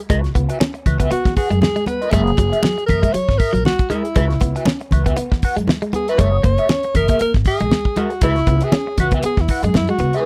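A swung sixteenth-note funk groove in 4/4 is driven by a damped 70s drum kit with a fat snare and tight kick sitting up front, a woody, growly pizzicato upright bass, and thick-skinned congas tucked in the background. A dark, fingered electric guitar with wah and phaser fills out the accompaniment, while a twangy, compressed, direct-recorded clean guitar picks a riff through spring reverb over alternating C#m7 and F#9 chords. From 1.1 s a warm alto saxophone takes a cool, jazz-style solo with vibrato and subtone, all captured in a dry, close 1970s-style studio sound.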